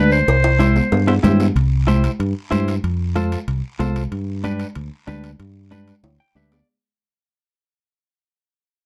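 Cumbia at a brisk 188 BPM in straight 4/4 and C major, this short festive, danceable fragment is cut from a longer piece and moves through C, F and G. A bright, vintage-toned clarinet carries the melody up front in a classical solo style, but only for the opening 1.2 seconds. Beneath it, a round fingered electric bass sits forward in the mix while a clean, picked semi-hollow guitar with a compressed hollow-body ring supplies the accompaniment and adds a fill near the close. In the percussion, congas with a thick-skinned, high-tuned sound played by soft hands are joined by ringing metal-shell cowbell and timbales heard close and dry, and a raspy guiro sitting far back. Drum fills mark the stretch from 0.3 to 1.6 seconds and again at the end, while the whole fragment fades out from 1.6 seconds onward under light reverb and a dark, warm production.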